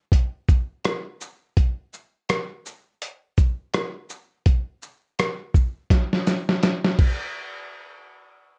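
A dusty soul sampler-style drum kit, up front with 12-bit grit, a thumpy kick, a medium-tuned snare, rim clicks, hi-hat, shaker and crash, carries this cool, smooth hip hop fragment on swung sixteenths in a dark, moderately reverberant mix, rolling into a fill at 5.9 seconds before the drums stop at 7.2 seconds.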